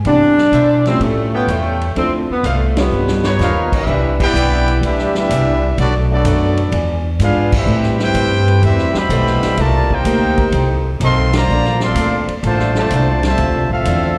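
Joyful and energetic, this big band swing cut, taken from a longer piece, rides a strong swing feel in 4/4. A woody, thumpy upright bass sits up front under a vintage drum kit with a tight kick and a rolled-off top, while a boxy, picked old ladder-braced acoustic guitar plays in the background throughout. At the start a clear saxophone section carries the melody over a polished baby grand piano, with a trumpet section adding stabs, and all three drop away by about 3.8 seconds after a short drum fill. From 3.4 seconds a trumpet section with light vibrato takes over the melody, supported by a bright trombone section playing a second line from 2.8 seconds onward. Band accents punctuate the groove, and the harmony moves through rich extended and altered jazz chords. Slapback echo on the piano, guitar, trumpets and trombones adds to the feel of a live gig heard through the venue's PA, set in the reverb of a recital hall.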